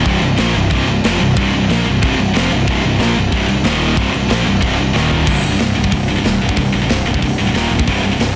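Driving straight 4/4 at a fast clip, this dark, relentless heavy metal fragment is cut from a longer piece and pushed forward by a tight acoustic drum kit, up front and mid-forward, with bright cymbals, a medium-tuned snare, a tight kick, hi-hat, crash and toms. Two heavy high-gain guitars, bright, distorted and picked, grind out the riff together, one of them set back in the background. A thick fuzz guitar, warm and double-tracked, plays the riff from behind until it stops at 5.3 seconds. A fuzz-laden picked electric bass sits up front with a growly, overdriven edge, holding the low end as the chords move between C5 and Eb5 power chords. A drum fill from 4.9 to 5.3 seconds leads into a second section, and the dry, dense, heavily limited master keeps the sound compact and crushing.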